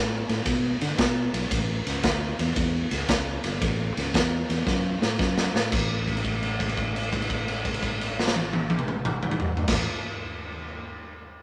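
Electric blues shuffle with a rollicking, gritty mood, built on a dark, round fingered electric bass and an up-front, saturated garage drum kit whose punchy kick, medium-tuned snare, crash, ride and toms sit in a bright stone room, with a drum fill at 4.7 seconds leading into a held note from 5.7 seconds in this cut from a longer piece.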